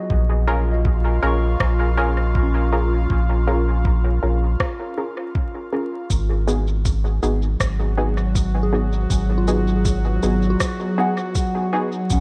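Meditative and deep, this ambient dub excerpt rests on a round, up-front sub bass and a soft, tape-warm electronic kick, while an airy, breathy pad holds sustained chords alongside filtered, muted chord stabs soaked in dub echo, a pure FM bell arpeggiates in the background through chorus, phaser and tape echo, a rim click and shaker join at 1.6 seconds, and the harmony shifts from A#m7 to G#m7 at 6.1 seconds within a light reverb and vinyl crackle.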